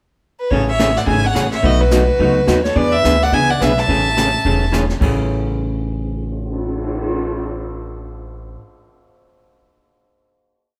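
A rich, focused fiddle opens the short, cheerful western swing piece at a brisk 213 BPM in A major with a brief pickup, joined by a nasal, biting second fiddle harmonizing mostly in thirds in the background, a dark, clean hollow-body electric guitar picking four to the bar, a woody, thumpy upright bass playing root and fifth with walk-ups, and a brushed drum kit sweeping the snare under dark cymbals, before the fiddles stop at 4.7 seconds and the band rings out on a final chord in a roomy studio.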